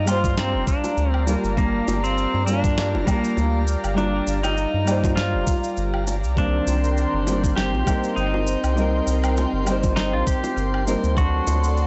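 Sunset chillout in C dorian at 100 BPM, with a smooth, relaxed, lightly swung groove over Gm7 moving to Cm7 and touching D7 near the close of this short cut from a longer piece. A clean electric pedal steel carries the melody with fingerpicked slide lines, volume swells and tape echo, while a thumb-plucked classical nylon-string guitar with fresh strings accompanies through analog delay. An airy, breathy detuned pad with chorus and phaser sustains chords above, the round, deep analog bass sits up front, and a gritty, thumpy sampled kick and fat snare with woodblock and shaker, re-recorded in a large room, are joined by very quiet low-tuned bongos, all within a dry, saturated cassette sound that is dark at the top.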